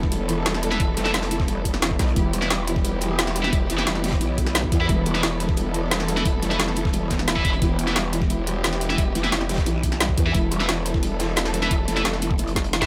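Dark technical drum and bass at 176 BPM in E phrygian, futuristic and aggressive, where an up-front growling, wobbling bass with distortion and chorus drives beneath knocking overdriven electronic kicks, a layered kit of woody snare and bright hats, a very quiet gritty breakbeat kit, sustained bowed string chords with vibrato and portamento and sidechain pumping, soft felt-muted piano arpeggios with delay and audible action noise in the background, and bright double-tracked high-gain guitar stabs entering at 0.7 seconds, closing on a drum fill at 12.6 seconds in this excerpt from a longer piece.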